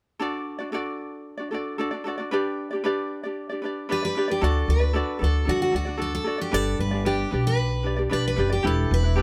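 A straight 4/4 pulse at 114 BPM carries this easy-going, carefree pop passage in D major, opening with a light, fingerpicked ukulele that plays from the start over D and G chords. A full-bodied, picked jumbo steel-string acoustic guitar takes up the melody at 3.9 seconds, and a woody pizzicato upright bass joins at 4.4 seconds as the harmony moves through D and G to Em7. All three acoustic instruments sit up front in a warm sound, with light reverb giving the feel of a band playing live together in one room.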